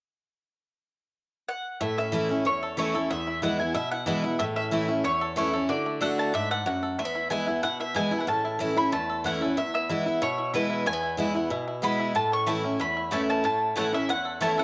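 A home cassette recording in a small room with light reverb captures this lively, virtuosic bluegrass excerpt at 186 BPM in A major, cut from a longer piece. The mandolin leads the melody from 1.5 seconds, its picked double strings sounding woody and up front, while a twangy, percussive banjo played with fingerpicks carries a second melodic line from the background. Up front beside the mandolin, a full-bodied dreadnought steel-string guitar with fresh strings picks the accompaniment, moving through A, E and D chords. Near the close, at 12.5 seconds, a second, brighter mandolin adds stabs from the background. Every part carries the grain of cassette tape, giving the brisk straight-feel playing a homespun character.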